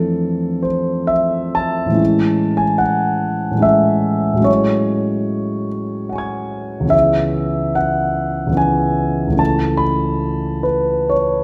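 A concert grand piano plays alone from the first moment, spanning C#2 to Ab6 in a dreamy, luminous impressionist passage at 73 BPM in 3/4, its uneven, rubato pulse drifting from Dmadd9/F through Amaj7 and Gbmadd9/A before settling on Aadd9/C# at 9.4 seconds. The instrument sounds intimate and up front, with deep bass, long sustain, a polished finish and the clatter of its action audible beneath the notes. A recital hall's lingering reverb surrounds this brief cut from a longer piece.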